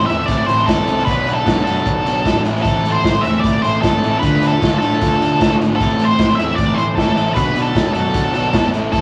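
An octave-fuzz lead guitar carries the moody, bittersweet melody up front with a dark, distorted tone coloured by cassette tape and tape echo, while a double-tracked, compressed fuzz guitar picks out the riff beside it. Underneath, an overdriven fuzz bass sits in the background and a raw garage drum kit joins at 0.1 seconds, its punchy kick, medium-tuned snare and hi-hat sounding gritty and saturated with a rolled-off top. This straight-feel indie rock excerpt moves through Am7, Bm7, Am and Dm in a small room with light reverb and the lo-fi character of a home cassette recording.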